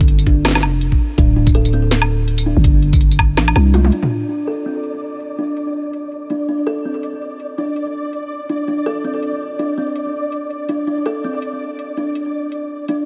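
Cinematic and spacious, this excerpt of half-time drum and bass at 164 BPM in D minor opens on a drop, with woody, hollow kalimba arpeggios under low-pass filtering and tape echo, a growling, buzzy 808-style bass thickened by tube saturation, and a knocking electronic kick. The layered kit brings a cracking snare, metallic hats, tambourine, toms and woodblock, all low-pass filtered. The kick falls away at 3.3 s and the bass at 3.9 s, and a drum fill carries into a filter sweep on the kalimba, while a flickering, grainy, detuned texture with its own reverb appears at 4.3 s in an otherwise dry, dark mix.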